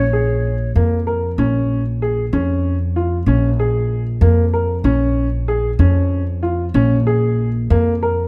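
A woody, up-front pizzicato upright bass anchors this short excerpt of contemporary chamber music, its steel strings giving the low notes a bright edge across the full 8.3 seconds. Beside it, a dark grand piano plays arpeggios in its middle register, a worn, boxy instrument with short sustain and audible action noise that makes it sound close and intimate. A reedy silver concert flute opens the passage with a single airy, straight-toned, tongued note with rolled-off highs, dropping away after 0.7 seconds. Set in an uneven 11/8 metre with a straight feel over a lone minor seventh chord, the music feels urgent yet pensive. A light reverb gives the small ensemble a modest sense of space.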